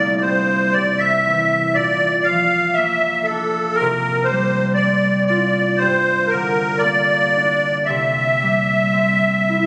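Captured on a phone in the room, this brief clip of a Celtic slow air has a compressed quality, wrapped in a moderate church reverb with a 2.7 second decay and a layer of club reverb. The mood is haunting and longing, with a rubato feel around 59 BPM in 4/4 and tuning set to A4 = 439 Hz. A musette accordion carries the melody from A4 to F5, its reedy, shimmering musette tuning sounding airy and up front. Beneath it, a concert harp plays fingerpicked accompaniment from C2 to F4, acoustic and ringing, also up front but sitting lower than the accordion. Both parts play together from 0.0 to 9.7 seconds over a single section that moves through C, Bb, Csus4 and Gm before coming back to C, cut from a longer piece.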